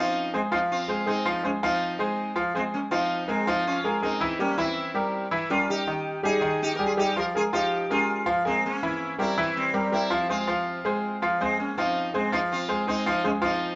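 Danceable and fiery, this short Latin cut from a longer piece sets a buzzing, shimmering sitar melody with sympathetic-string resonance against a bright, worn concert grand piano whose audible action noise and deep bass fill out the accompaniment, both up front in a wet, large live room, moving through minor chords that lean on a C7b9 before settling back home.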